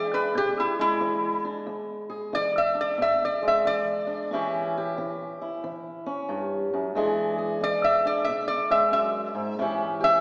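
Heard through a small-speaker sound in a wet, lingering concert-hall reverb, this laid-back, gritty acoustic country blues fragment features a metallic, nasal lap resonator guitar soloing up front across the full 10.2 seconds, played with fingerpicks and a steel bar slide. Beneath it, a boxy swing-style acoustic guitar with fresh strings is fingerpicked with audible finger squeak, as the harmony moves from E7 to A7, back to E7 and again to A7.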